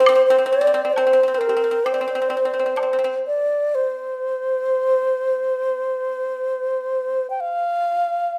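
Loosely rubato in a free-flowing 4/4, this festive, graceful passage of Chinese traditional chamber music is cut from a longer piece. A low bamboo xiao carries the melody up front, its close-miked tone breathy, reedy and bright, with tongued notes and vibrato. Beneath it, a second, very quiet low xiao adds an airy, expressive line with a crisp attack and lifted highs, while a dry pipa played with fingerpicks supplies a percussive second line and a close woodblock ticks along. The supporting parts fall away just after 3 seconds, leaving the lead xiao to play alone from 3.3 seconds until the end at 8.4 seconds as the music moves into a new section. A recital hall's lush reverb surrounds the ensemble with a gentle, spacious glow.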